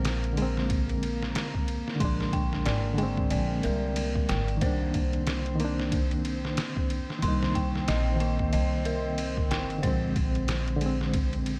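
A dark, brooding trip hop fragment features a muffled, pitched-down sampler-style drum kit up front, its thumpy kick, medium-tuned snare and ride cymbal set against a woody pizzicato upright bass on gut strings, all with a swung sixteenth-note feel. A reedy electric piano with medium tremolo and tape echo carries the accompaniment, while a lo-fi, warbling pad sits in the background with chorus and its own reverb, and an eerie, inharmonic FM bell spins detuned arpeggios through chorus and tape echo. The harmony moves from Bb7 to Cm7 at 4.6 seconds and back to Bb7 at 9.8 seconds, in a dry room.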